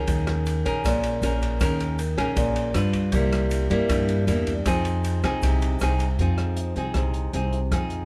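This wistful, intimate bossa nova passage in F minor opens with a fingerpicked nylon-string guitar up front, its full-bodied classical tone marked by an occasional finger squeak, alongside a woody, growly pizzicato upright bass. At 157 BPM in a straight 4/4, an acoustic jazz kit joins almost at once with hi-hat, kick drum, ride cymbal and rim click, its dark cymbals and boomy kick heard with a rolled-off top and a small-room sound. Far in the background, a grainy, bright tube shaker adds texture until it drops away at 6.2 seconds, where the music moves into a new section. The harmony travels from Eb7sus4 through G7 and C7 to Fm7. The band plays together in one room under light reverb, giving the passage a close, live feel.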